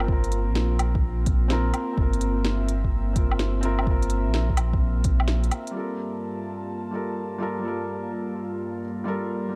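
Future garage at 127 BPM in G dorian with a 16th-note swing, melancholic and nocturnal, where a felt-muted upright piano with audible action noise and an airy, breathy pad pump under sidechain through the whole 9.6 seconds. A round, up-front dub sub bass and a deep electronic kick drive the groove alongside a filtered organic kit of woody snare, crisp hats and woodblock until the drums and bass drop out between 5.2 and 5.7 seconds, leaving piano and pad to move from Bbsus2/G to Gm9 in a dark, dry production.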